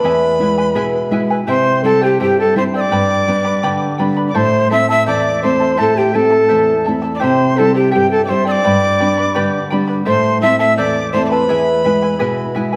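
A straight 2/4 pulse at 84 BPM carries this earthy, festive Andean folk excerpt in A minor, cut from a longer piece and set in a recital hall whose reverb is generous. Large cane pan pipes lead the melody with a breathy, warm, rolled-off tone, vibrato and tongued attacks with chiff. Above them, an end-blown quena plays a second line, its airy, reedy sound bright with lifted highs and its own vibrato. A fingerpicked charango fills the middle with the shimmer of its double strings, some of them octave-doubled. Underneath, an up-front classical nylon-string guitar adds dark fingerpicked accompaniment, with audible finger squeak. The phrase repeats once, moving through E, C, G and A minor, and all four parts play from the start until about 12.6 to 12.8 seconds.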